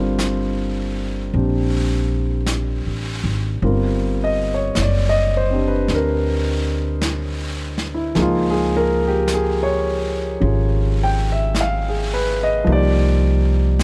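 A warm, intimate concert grand piano with audible action noise sits up front in this wistful, smoky jazz ballad excerpt in G minor at 53 BPM with a swung feel, joined by a woody pizzicato upright bass and, from 0.2 seconds, a softer brush kit of snare and hi-hat in a small room, moving through chords from Gm9 to Gm7, C# and Cm9 in a dry, closely miked setting.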